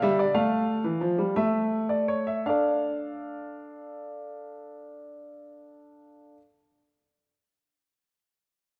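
Classical, baroque-style two-part invention for solo grand piano in D minor and 6/8, contemplative and solemn at 52-62 BPM in dotted quarters, cut from a longer piece: the warm, natural, up-front piano ranges from E3 to F5, slowing through the opening 2.4 seconds over Fmaj9 and A before settling on Dm, then plays on until 6.4 seconds, its sound carried by a wet recital-hall reverb.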